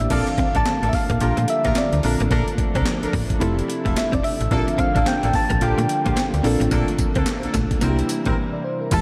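A flirty, bouncy new jack swing groove at 109 BPM opens with a gritty, overdriven breakbeat kit of thumpy kick, snare, handclaps, hi-hat, tambourine and crash, a snappy FM slap bass, a dark, round FM electric piano with chorus and phaser, and a gentle, keys-like synth lead carrying the melody with vibrato and slapback echo. From 0.1 s a bold, detuned sawtooth pad with tremolo sits in the background alongside tight, mellow horn stabs, and at 0.3 s a clean, direct electric guitar adds a picked riff that stops at 8.3 s. The chords move from Bbmaj7 through Gm7/Bb and Fmaj7 to a C7 before a short break near the end of this cut from a longer piece, all set in a lush hall reverb for a big arena sound.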